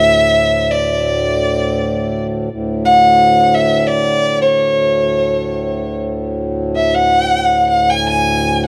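A rich, smooth violin with vibrato and tape echo sings a meditative, radiant Hindustani melody in free time over a reedy, breathing hand-pumped harmonium drone, tracing raga yaman in D at A4 = 437 Hz in a dry, close 1970s-style studio sound, the violin sounding distant beside the close-miked harmonium across this short fragment of a longer piece lasting about 8.7 seconds.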